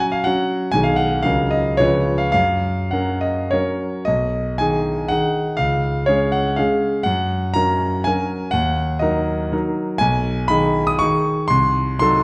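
Bathed in a wet recital-hall reverb, this 12.2-second excerpt of a graceful, proud romantic classical dance in 3/4 and F# major features a solo concert grand piano, clear and smooth with a vintage character, deep bass and an up-front presence, spanning B1 to D#6 with dotted rhythms and rubato between 97 and 131 BPM, opening on a high F#5 and moving at 4.1 seconds into a second section whose harmonies pass through G#m/B, C#, F# and D#m before closing on a Cdim7.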